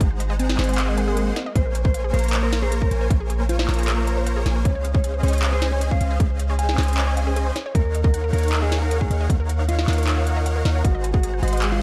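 This bittersweet, dreamy future bass piece, cut from a longer work, opens with its core parts together in Bb minor at 155 BPM, felt in a half-time 4/4 and tuned to A4 = 435 Hz. Huge, lush supersaw chords carry the riff with a bright, detuned sawtooth sheen, analog chorus and sidechain pumping. A punchy, wave-folded unison pluck traces arpeggios in the background through dub echo, over a deep, boomy 808-style bass sitting up front. A hard-clipped electronic kick and a trap kit with a sharp snare, handclaps and crisp hats drive the beat. At 0.4 seconds a mellow, clean, fingered electric guitar takes the melody, roughened by vintage 12-bit sampler grit with its own pumping and dub echo, while a brief electronic swell sounds in the background at 1.0 seconds. The harmony moves from Ab7 through Bbm9, Dbmaj9 and Ebm9 back to Ab7, all within a dark, warm production with light reverb.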